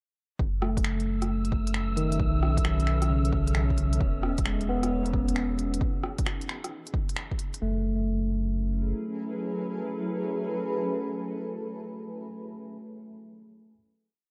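Echo-heavy and lightly reverberant, with lossy compression artefacts smudging the edges, this nocturnal, melancholic future garage piece moves at 133 BPM with a swung 16th-note feel in F# dorian. A punchy, muffled two-step kick and a skittering, shuffled deep house kit of smooth closed hats, rim clicks and finger snaps, both coated in 12-bit sampler grit, play alongside a round sine sub bass, while a blurred granular cloud pad pumps through F#m11, B9sus4 and Emaj9 and a breathy, wind-like noise layer holds a high E6. An overdriven tine electric piano scatters bright notes through a combo amp, tape echo and a filter sweep, and after the groove ends at 7.6 s it rings on over the final F#m11 chord until 13.7 s.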